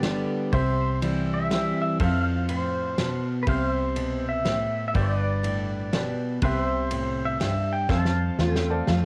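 A swung waltz feel carries this sunny, heartfelt honky-tonk and classic country fragment, cut from a longer piece, as a warm pedal steel with fingerpicked slide and volume swells sings the melody over sustained chords from a second, bright and twangy pedal steel treated with lush chorus and plate reverb. A warm, up-front dreadnought acoustic guitar and a round, foam-muted, dark electric bass anchor the G, C and F changes, while a woody, brilliant upright piano sits in the background with plate reverb and a natural small-room kit adds a fat snare, punchy kick and ride cymbal. The drums break into a fill at 7.9 seconds and the piano adds its own at 8.4 seconds, all captured as a home cassette recording in a moderate booth ambience.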